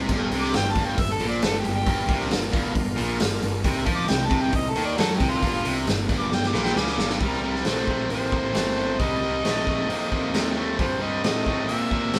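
Gritty and driving, this blues rock and southern rock excerpt in a straight 4/4 has the feel of a power trio playing live together in a small room with a wet reverb. A distorted, double-tracked electric guitar sits up front with a picked riff, while a growly fuzz bass, direct and amped, digs in beneath it over chords moving between G7#9 and C7#9. The raw garage drum kit enters at 0.1 seconds with a punchy kick, a medium-tuned snare, hi-hat and crash cymbal, its tone dark with a rolled-off top, and a drum fill from 6.3 seconds leads into the second section at 7.2 seconds. From 0.4 seconds a mellow harmonica takes a jazz-style solo with a soft attack, light vibrato, scooped notes and tongue slaps, pushed through overdrive. Underneath it all, a very quiet overdriven tonewheel organ holds thick sustained chords through a slow rotary speaker with chorus vibrato.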